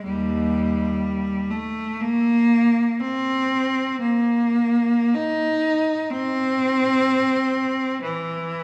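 In free time, this short classical piece for unaccompanied cello unfolds with an expressive flow, cut from a longer work. The mood is nostalgic and lyrical. A single bowed cello carries the whole 8.6 seconds, spanning D#2 to D#4 with an intense, rich tone, vibrato and a smooth top end. The instrument sits up front in the mix, close and present, while a moderate scoring-stage reverb with a 1.9-second decay and a hint of small-room ambience give it space. The tuning sits slightly high, at A4 = 443 Hz.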